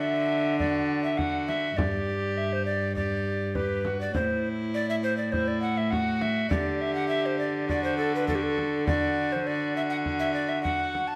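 A stately, courtly renaissance-style consort dance opens with tenor recorder, viola and cello sounding together, the recorder carrying the melody in a mellow, airy wooden tone with a straight, tongued delivery and a touch of chiff, placed close and up front. A single bowed viola supplies accompaniment with a gut-string, period-style sound, reedy and lightly touched with vibrato, set at a distance. A single bowed cello anchors the bass, also gut-strung and rich, sitting close and forward. At 0.6 seconds a deep, large frame drum joins, played with soft hands and heard close and dry. The piece moves at a steady 101 BPM in straight 4/4, its harmony passing from D through G and A minor to a suspended D that resolves back to D, all set in a wet stone room. This short section is cut from a longer piece and tuned slightly above standard pitch, at A4 = 441 Hz.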